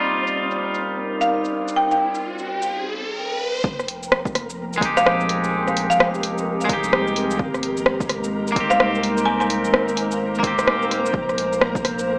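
Swung sixteenths at 128 BPM in 4/4 drive this melancholic, nocturnal future garage excerpt in F minor, where an up-front, overdriven deep house kit of hi-hat, rim click and shaker, later joined by a punchy electronic kick and a round sub bass at 3.6 s, runs under a warbling, nostalgic tape-like pad, a twangy, clean electric guitar with tape echo, a woody, buzzing hard-mallet marimba melody, a flickering grainy texture in the background and a brief electronic riser into a break. Lo-fi sampler grit roughens the pad, guitar and marimba, and the whole mix is softened by lush hall reverb and a small-speaker tone over chords moving from Ebadd9 through Fm7 and Abmaj7 to Bb5.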